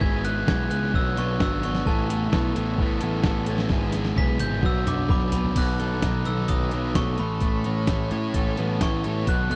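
A straight 4/4 pulse at 130 BPM drives this wistful, carefree indie rock passage in E mixolydian, cut from a longer piece, with a muffled, pitched-down sampler-style drum kit up front that thumps out kick, snare, hi-hat, crash and toms and rolls into a fill from 3.7 to 5.6 seconds. A dark, bell-like glockenspiel struck with hard plastic mallets carries the melody through tape echo and takes a solo over the opening 5.6 seconds. Around it, a fuzz guitar riffs with a bright, compressed edge, an overdriven electric guitar sits in the background behind a lush chorus, and a growling picked bass adds overdriven grit, all in a dry, close 1970s-style studio sound.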